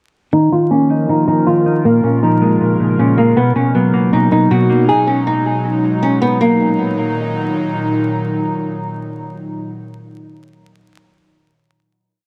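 A dark, fingerpicked flamenco guitar loop and a clean, mellow electric guitar arpeggio in eighths open together at 0.3 seconds, both filtered and trailed by tape echo, setting a menacing, brooding half-time trap groove at 158 BPM in Eb minor. An airy, breathy pad with chorus enters at 0.9 seconds, spreading soft sustained chords beneath the guitars as a filter sweep runs through the breakdown over Ebsus2, Bbm7, Bmaj7 and Abm7. The electric guitar drops out at 4.9 seconds, and the piece settles on a final Ebm chord from 6.4 seconds, all wrapped in spring reverb, heavy echo and vinyl crackle.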